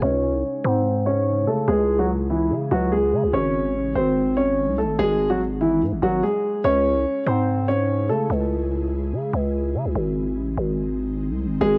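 Drill hip hop excerpt with a menacing, tense half-time feel, where a dark, mellow concert grand piano carries the melody up front with audible action noise, low-pass filtering, cassette tape colour and analog delay before dropping out for a break at 8.3 seconds, while an ethereal, airy detuned pad with ensemble chorus and built-in reverb holds sustained chords in the background and a growling, buzzy, saturated 808-style bass drives the low end through a lo-fi home cassette recording with light reverb.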